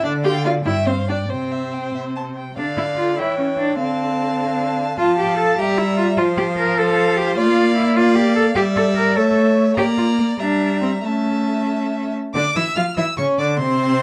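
A rich, up-front viola carries the accompaniment beside a focused cello bass in this quick, graceful and cheerful classical-period string quartet movement in D minor and 6/8, moving at 91-102 BPM with rubato, while a distant, clear first violin sings the melody above a second violin's inner line, the bowed parts shaded with vibrato in a dark production with light reverb.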